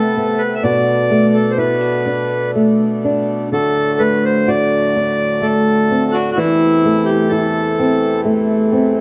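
In a free, rubato 3/4 at about 63 BPM, this haunting, mournful Celtic slow air drifts along, cut from a longer piece and tuned slightly low at A4 = 436 Hz. A hollow, up-front accordion carries the melody until it stops at 8.2 seconds, while a dark, thumb-plucked flamenco guitar, also up front, supplies accompaniment, and a breathing, mellow hand-pumped harmonium holds sustained chords beneath. The recital hall's wet reverb, with a 1.4-second decay, softens a sound whose top end stays dull, as the chords move from Amadd9/C through Bm7 and D to Am/E.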